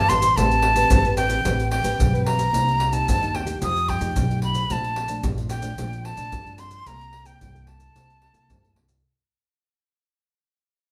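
Bittersweet and yearning, this short excerpt of samba and choro moves at 111 BPM in a straight 4/4, cut from a longer piece and fading out from 0.4 seconds onward. A breathy, bright metal jazz flute carries the melody up front, its close-miked tone expressive, with vibrato and a soft attack, floating high between G5 and Eb6. Beneath it, a thumb-plucked classical nylon-string guitar supplies accompaniment with audible finger squeak, while a woody pizzicato upright bass strung with steel anchors the low end. Maracas, pandeiro and a deep surdo enter at 0.1 seconds, sitting up front with a small-room acoustic character. The band plays live together in one room, bathed in a wet studio reverb, as the harmony passes from Am9 through Cm7, F9 and Bbmaj7 to a closing C13.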